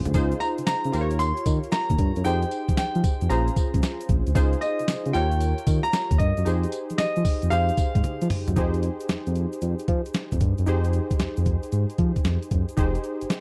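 A clear, polished baby grand piano carries the melody from 0.4 to 8.3 seconds, up front with a slapback echo, over punchy, bouncy new jack swing R&B with swung sixteenths and lush ninth chords such as Dbmaj9, Eb9, Fm9 and Bbm9. Beneath it, a gritty, compressed, pitched-down boom bap sampler-style drum kit with a thumpy kick, tambourine and toms plays a fill at 8.0 seconds, while a dark, smooth sawtooth synth bass with ring modulation and vibrato sits up front. Round, detuned analog keys with a filter sweep and chorus and a grainy egg shaker in the background fill out a dry, close 1970s-style studio sound in this cut from a longer piece.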